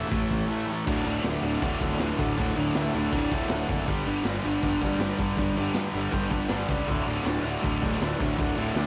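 A double-tracked fuzz guitar riff opens this swaggering, rowdy garage rock fragment at 160 BPM in D major, with a buzzy combo organ holding sustained chords in the background and an overdriven fuzz bass rumbling low beneath, the harmony moving from A to D, then G and back to D. The raw drum kit drives hard up front from the start, pausing only for a brief break at 0.5 s, its punchy kick, medium-tuned snare, hi-hat and crash sounding gritty and saturated with a rolled-off top. The lightly vibrato-tinged organ adds fills at 3.1 s and 5.8 s, while light reverb and the cassette home-recording character give the guitar, organ and drums a lo-fi edge.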